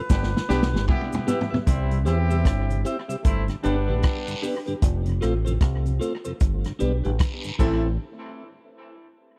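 A deep, dark fingered electric bass sits up front in this serious, hypnotic roots reggae excerpt at 76 BPM in 4/4, with a swung sixteenth-note feel. Beside it, a vintage acoustic drum kit with a punchy kick, medium-tuned snare and rolled-off top plays a fill under a band accent through the first 1.7 seconds, touching on crash, hi-hat, rim click and toms, all coloured by tape echo. A reedy, breathy melodica sounds only briefly at the start, gone by 0.9 seconds. A tight, clear horn section carries a second line with tape echo, while a clean, picked electric guitar with spring reverb and a mellow tonewheel organ with key click and slow rotary speaker fill in the accompaniment, the organ sitting in the background. Faint cabasa and guiro add a band-limited shimmer. The harmony moves from G and Em to C, G, F, G and Am, captured as a dry, close 1970s-style studio recording in a small room.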